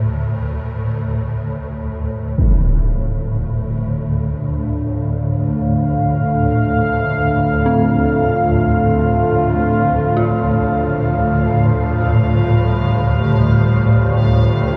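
A swarming, detuned drone sits up front in the low register, a granular sine mass with its own reverb that gives this dark ambient excerpt its unsettling, cavernous weight, while a very quiet, eerie FM bell traces inharmonic, chorused arpeggios with tremolo. At 2.4 seconds a huge, bright impact lands and a sweeping resonant pad enters, its sawtooth and triangle tones ring-modulated and bathed in chorus and shimmer reverb as it fades out, while a mellow, bubbling texture of random filter steps fades in alongside it. The recording sits in a vast, dark wash of reverb with a long, lingering decay.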